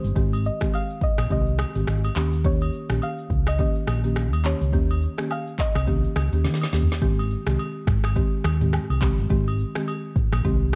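Joyful and breezy, this short afrobeats cut moves at 105 BPM in 4/4 with a lilting swing on the sixteenths, set in Ab major and drifting from Abmaj7 to Eb7. A soft, rounded synth pluck carries the melody between C5 and F5 through chorus and tape echo, with a quick attack that decays gently, and it falls away at 6.7 seconds. Underneath, a buzzing marimba struck with medium mallets gives dry, woody hardwood-bar accompaniment. A hollow-body short-scale electric bass, fingered and amped, sits up front with a dark, round tone. The electronic afro-pop kit is also forward, with a deep kick, a woody snare, rim clicks, toms, snaps, handclaps and shaker, all tape-warm and re-recorded in a small room, and it plays a fill just before the chords return to Abmaj7 at 7.0 seconds. Quiet agogo bells and woodblock, close and acoustic, add a faint layer of egg shaker and group handclap, all within a dark production of digital ambience.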